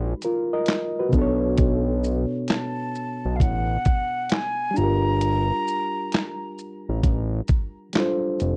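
Hazy and nostalgic, this short lo-fi hip hop excerpt drifts along at 66 BPM in 4/4 with a swung sixteenth-note feel. A reedy, slightly out-of-tune electric piano carries the chords from the opening, moving through G#m9, Bm9 and Gm9 with a cassette-tape character, heard through built-in speakers. Beneath it, a fat analog bass sits low and saturated, its detuned sawtooth and square-wave tone nasal and sustained. From 0.2 seconds a dusty soul sampler-style kit brings a thumpy kick, a medium-tuned snare, hi-hat, shaker and handclaps, compressed and gritty and the loudest part in the mix. A breathy concert flute enters at 2.5 seconds with a close-miked, straight-toned melody and soft attack, dropping out at 6.6 seconds. Light reverb and a worn, warbling tape sound with warbly pitch drift and a dulled top end wrap the whole recording in an aged haze.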